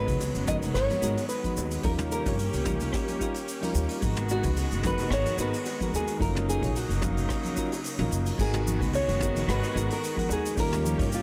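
A lightly swung 4/4 groove at 110 BPM drives this wistful sunset chillout piece in G# dorian, cut from a longer track and built on a deep, analog electronic kick and a jazz brush kit with dark cymbals, hi-hat, rim click, shaker, toms and crash, along with soft-handed congas and bongos sitting compressed and saturated in the background, all entering together at 0.1 seconds. A pizzicato upright bass with a woody tone and steel strings anchors the low end and is the most present part in the blend. Over it, a small, fingerpicked nylon-string guitar carries the melody through analog delay, while soft electric-piano-like synth keys with a round, mellow, decaying tone fill in the accompaniment through chorus and tape echo. A rich studio string section holds smooth, evenly bowed chords with vibrato underneath. The harmony moves between G#m7, D#7 and D#m7/F#, shifting into a new section at 8.4 seconds, and the whole mix has a dry, gritty hardware character with a small room ambience.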